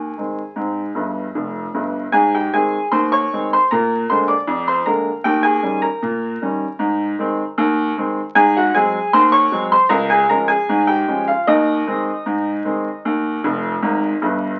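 A clear, woody upright piano plays alone and up front through this brief, lively ragtime fragment, cut from a longer piece. The cheerful solo moves in a straight two-beat metre and spans the keyboard from deep bass notes to bright upper ones. The harmony travels from A-flat through dominant-seventh chords and back home, then moves on through D-flat to close on E-flat. Short fills decorate the phrases at 1.0 seconds and again at 13.4 seconds, just before the clip ends. The piano's natural tone sits in a small, reverberant room, heard through the crackle and dulled top end of a very old 78 rpm record, which gives the whole fragment a charming vintage patina.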